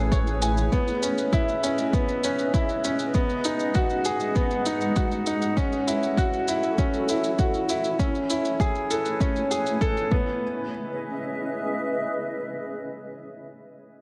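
Melancholic and cinematic, this piano and strings electronica piece moves at 99 BPM in 4/4 with a straight feel in C# minor, and it is cut from a longer piece. A bright upright piano carries the riff from start to finish, its woody, intimate tone full of audible action noise and short sustain, sitting up front with a delay trailing behind it. Underneath, a granular cloud pad holds sustained chords with a blurred, evolving character and slow attack, its own reverb and sidechain pumping giving it a breathing quality, while a round sine sub bass with tube saturation sounds only briefly at the opening. An overdriven, layered electronic kick drum drives the groove up front alongside a soft, produced shaker, both dropping out at about 10.2 seconds as the music moves into a sparser passage. The harmony circles through Amaj7, C#m7, G#m7 and F#m7, and the whole is set in a moderate recital hall reverb that lends a spacious finish.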